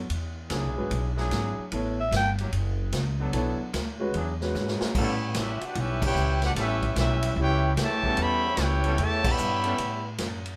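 Heard through a moderate club reverb, this energetic big band swing excerpt opens with a bright, close-miked trombone section holding sustained chords over woody pizzicato upright bass, a distant, roomy drum kit with a punchy kick, and an open, long-sustaining grand piano, with a raspy, growling clarinet cutting in briefly before a clear trumpet section takes the melody at 5.0 seconds over a tight, warm trombone second line, the band striking accents at 6.0 and 9.2 seconds.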